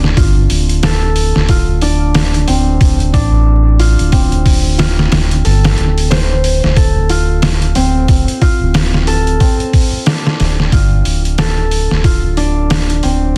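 A round, deep analog bass sits up front with a dark, sustained tone built from sawtooth and sine, anchoring this brooding, hypnotic trip hop excerpt at 91 BPM in D minor with a 16th-note swing over a Dm7 chord. A gritty, pitched-down sampler-style drum kit with a thumpy kick, medium-tuned snare and hi-hat rides under studio reverb, while a thumb-plucked concert harp rings out arpeggios through tape echo. The dense, heavily limited master carries a layer of vinyl crackle, and the music moves into a new section at 9.4 seconds.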